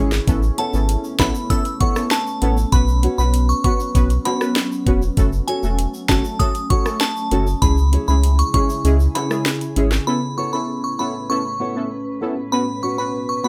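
Bouncy and tough, this dancehall cut from a longer piece moves at 98 BPM, with a knocking, electronic drum kit of sharp snare, rim clicks and metallic hats sitting up front beside a round, deep sine sub bass, while tube shaker and timbales add compressed, saturated texture in the background. Thumb-plucked classical nylon-string guitar arpeggios, punchy detuned sawtooth brass stabs with chorus, and a slow-blooming ethereal FM pad with ensemble chorus and sidechain pumping carry the chords through Aadd9, Bsus2, F#m and C#m, as a crystalline, bright synth bell melody with tape echo rings above from 0.6 seconds. The kick drops out at 8.8 seconds, and after bass and drums stop at about 10.1 seconds the guitar, brass, pad and bell carry on alone under light reverb.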